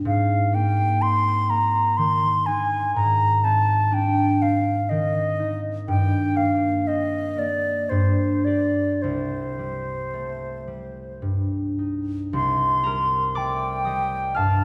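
This impressionist classical duo for flute and harp feels wistful and mysterious, moving in a rubato 3/4 at roughly 52-65 BPM in C minor, tuned to A4 = 438 Hz. The concert harp carries the accompaniment from the start across a span of C2 to F6, its fingerpicked strings acoustic and ringing. The concert flute takes the melody at 0.1 s, staying between C5 and C6, with a pure, straight tone and a crisp attack. Both instruments sit up front, though a wet scoring-stage reverb places the listener further back in the room. The harmony moves from Abadd9 through Cm7/Ab, Gm and Gsus4 to Cmadd9, and the opening material returns at 12.3 s over Cm7 before this fragment of a longer piece breaks off at 14.6 s.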